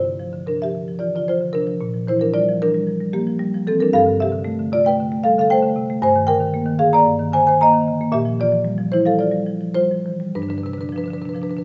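A soft-malleted marimba plays alone from the first moment, its woody, round, mellow, airy tone sitting up front and spanning G2 to Bb5 in this flowing, warm contemporary classical excerpt, moving with a rubato feel through suspended and color chords from G7sus4 and Bb6 toward a final G at 10.3 seconds, all carried by a moderate recital hall reverb.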